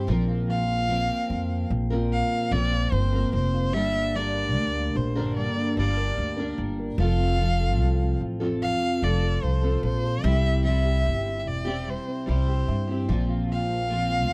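A bowed solo violin with focused, boxy vibrato sings the melody up front, together from the first moment with a woody pizzicato upright bass, a double-tracked dreadnought steel-string guitar picked with finger squeak, and a thumb-plucked nylon-string guitar playing dark arpeggios in the background. This heartfelt, easy-going pop fragment moves in a straight 4/4 through Bbsus2, Gm, F and C before returning to Bbsus2. The close, dry 1970s-style studio sound keeps the acoustic instruments intimate.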